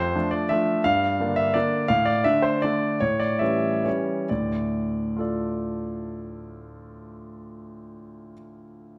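A concert grand piano sits up front in a moderate recital hall reverb, its intimate, polished tone carrying audible action noise, deep bass and long sustain. This elegant, nostalgic classical waltz in D minor moves in 3/4 with a rubato feel between 125 and 178 BPM, playing solo across a range from D2 to F5. Cut from a longer piece, it passes through Dm/F, Gm7, D5/A and A7, slowing from 1.4 to 4.3 seconds before settling on D minor and opening a new section.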